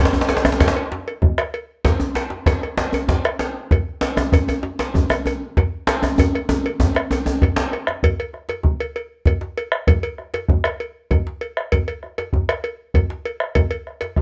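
A drum fill opens this powerful, driving West African drum ensemble excerpt in a straight 12/8 at 130 BPM, where a medium-tuned djembe and a deep djembe with metal rattles are joined by a round, up-front bombo and a metallic, dry cowbell, with one djembe dropping out at 7.7 seconds during a second fill that starts at 6.2 seconds, all caught by close, detailed microphones with little reverb.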